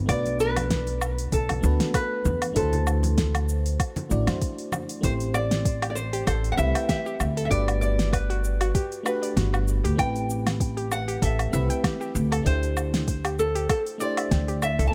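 A light reverb and small room ambience give this relaxed sunset chillout excerpt an intimate, unhurried glow at 97 BPM in 4/4, with a gentle 16th-note swing in A dorian. A woody, thumpy upright bass sits up front from the start, plucked pizzicato on steel strings, beneath a dark, round FM electric piano treated with chorus and delay. A small, fingerpicked nylon-string guitar carries the melody through tape echo, while a soft electronic kick and an R&B kit with a fat snare, metallic hats, cabasa and woodblock add an overdriven, produced edge. Close, dry congas played with soft hands ring in the background until about 4.9 seconds. From 5.8 seconds a gentle, mellow pluck with a filter sweep spins arpeggios through chorus and delay as the chords move from Am7 through Gmaj9 to D9sus4.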